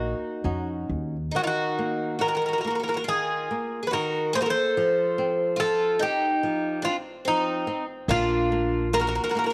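A metallic, double-strung Greek bouzouki sits up front with the melody in this mournful, longing fado-style ballad excerpt in Eb minor, played rubato around 71 BPM in 4/4 over chords moving from Ebm7 through Ebsus2 and F7 to Bb. Beneath it, a boxy, shimmering picked twelve-string acoustic guitar carries a second line, while a bright, fingerpicked flamenco guitar with fresh strings and audible finger squeak supplies accompaniment. A woody, thumpy pizzicato upright bass sounds up front only at the opening and again from 8.1 s, all set in a moderate echo-chamber reverb with studio ambience and a faint mains hum.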